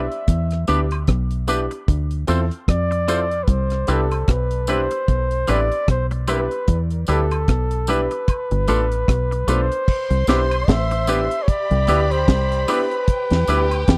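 At a swung 75 BPM in 4/4, this tender, romantic lovers rock reggae moves over a dry, dark drum kit with a high-tuned snare and a round, foam-muted dub bass up front, while a polished grand piano and twangy, spring-reverbed electric guitar stabs fill the middle, tambourine and woodblock add a saturated shimmer, a breathy flugelhorn with tape echo sings the scooped, jazz-style melody, and a lush bowed string section joins at 9.9 seconds.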